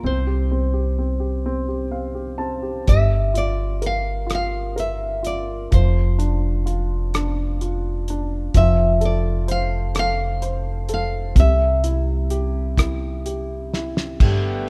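This intimate, melancholic acoustic folk-pop ballad in a straight 6/8 sets a fingerpicked, full-bodied nylon-string guitar melody with audible finger squeak over a woody, slightly detuned upright piano with audible action noise and a growly pizzicato upright bass. A cloth-damped, thuddy drum kit with dark cymbals and a fat snare joins at 2.9 seconds and plays a fill at 13.7 seconds, and a reedy, breathing pedal harmonium enters at 14.2 seconds, all in a close, dry sound.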